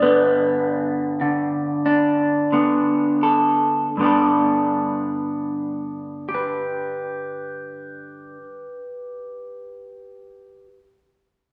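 Hopeful and unhurried, this short folk fragment, cut from a longer piece, opens on a Gadd9 chord in G major at a slow 38-52 BPM in 4/4, with a solo electric guitar that is dark, slightly broken-up and lo-fi, picked up front through a small old amp with a phaser, easing its pace during the first 4.0 seconds before a new passage begins, all set in the wet, lingering reverb of a recital hall.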